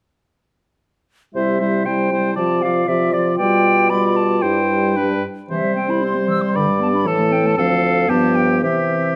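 Graceful and spirited, this quick classical-period movement for wind quintet is cut from a longer piece and moves in 2/4 with a flexible, rubato feel. The silver concert flute carries the melody in a pure, metallic voice with vibrato and a soft attack, while the clear oboe adds a second line alongside it. The clarinet, with its smooth top, and the mellow French horn fill in the accompaniment, and the bassoon grounds the ensemble with a present, warm bass. The flute, clarinet and horn enter at around 1.3 seconds, with the oboe and bassoon joining a moment later, and the quintet plays through to 9.2 seconds, passing from C through G7/B and Am before closing on Dm7, G7 and C. Moderate recital hall reverb surrounds the close, detailed sound.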